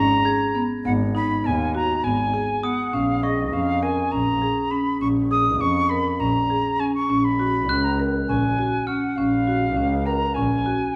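Moving in an uneven 7/8 at 202 BPM counted in eighths, this urgent, pensive piece of contemporary chamber music sets an airy, expressive jazz flute melody up front over woody marimba arpeggios and a bowed, focused double bass with vibrato, while a dark, bell-like glockenspiel rings in the background from 0.0 to 3.9 seconds and returns at 7.7 seconds, the whole heard within a wet recital hall reverb as the harmony shifts from A#m7/G# through G#m to A#m7 and F#maj7/A#.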